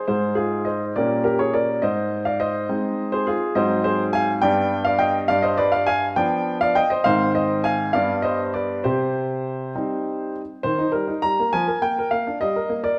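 A clear baby grand piano, intimate and up front with audible action noise and long sustain, plays a restless, elegant classical-period sonatina in C minor at 69 BPM in a straight 6/8, tuned to A4 = 441 Hz. Its opening passage circles through Ab, G and G7 harmonies before settling on C minor, then a new passage begins at 10.6 s, turning to brighter Eb and Bb/F chords. The solo piano spans G2 to Bb5 in a wet recital hall, and this brief cut from a longer piece ends at 13.0 s.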